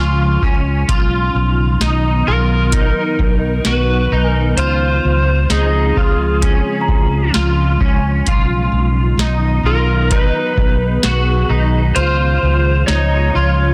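A slow, floating dream pop excerpt in Db major at 65 BPM opens with an ethereal, airy pad holding sustained chords under a chorus sheen and its own reverb, joined at once by a slightly broken-up electric guitar fingering twangy arpeggios through chorus and delay. A round, dark fretless electric bass sits up front in the low register, while a small celesta adds delicate, bell-like touches with delay in the background until 8.2 seconds. A booming analog drum machine enters at 0.4 seconds with a deep kick, tonal snare and metallic hats, its sound kept dry. From 2.3 seconds an overdriven slide guitar, played with fingerpicks and trailed by delay, carries the melody over chords that move between Dbmaj7, Cbmaj7 and Cb. The whole is set in light digital ambience with a dense, heavily limited modern master, giving a dreamy, suspended mood.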